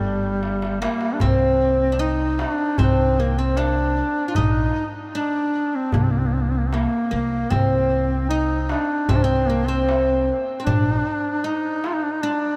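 A clear, up-front duduk sings the folk-style solo melody with vibrato, while a deep, double-strung fretless oud plucked with a plectrum weaves a second line alongside it, both trailed by a diffuse ambient delay. This passionate, festive excerpt from a longer Turkish makam piece also features a woody pizzicato upright bass up front, which drops out at 11.0 seconds, and a crisp metal-shell darbuka set distant in a large room, which plays a fill from 0.4 to 1.2 seconds. The whole dreamy mix is soaked in a huge ambient reverb.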